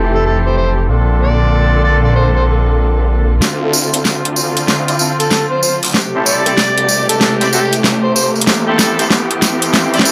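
Playful and funky, this glitch hop cut from a longer piece moves at 95 BPM in D minor with a swung 16th-note feel. It opens with bowed studio strings holding sustained chords under a low-pass filter, clear pop-style horn stabs trailing dub echo, and a thick, swirling detuned saw bass with saturation and phaser up front, while an overdriven harmonica carries the jazz-style melody with gritty tongue slaps, scooped notes and dub echo. The chords move from Fmaj9 to Bbmaj7, then to Dm7 at 3.4 seconds, when a layered electronic drum kit with a huge snare and metallic hats lands up front alongside a jingly, bright tambourine. From that point the track builds, with a drum fill running to the end and a filter sweep on the horns. At 5.6 seconds an electronic riser enters in the background as the harmony passes through Am7 and returns to Fmaj9, all set in a light reverb.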